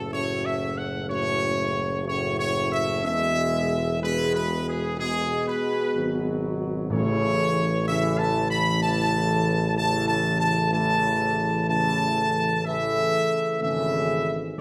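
A recital hall's reverb gives this classical brass passage a spacious, resonant setting, with sound lingering for nearly two seconds after each chord. At a slow 62 BPM in 4/4, the music is majestic and solemn, moving from F# minor through E to a resolution on A major, and the clip is cut from a longer piece. A bright trumpet section carries the melody up front with light vibrato, while a dark, soft-attacked French horn section and a warm trombone section hold sustained chords in the background. A mellow tuba anchors the bass from the opening. Timpani played with soft mallets on calf heads add a round, distant presence on A between 6.9 and 8.3 seconds, marking the arrival of the A major chord.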